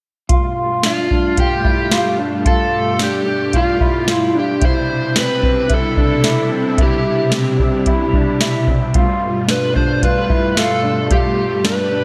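Dream pop with a dreamy, ethereal mood, where a soft vintage rhythm box with a deep kick, crisp snare and metallic hats under gated reverb sits up front over a sawtooth string machine of violas holding sustained chords through ensemble chorus, a mellow electric guitar plays clean arpeggios through lush chorus and digital delay, and from 0.9 seconds an overdriven slide guitar carries the melody with subtle chorus and delay, all over G7 and Cmaj7 in a moderate hall reverb with bright 1980s-style digital production.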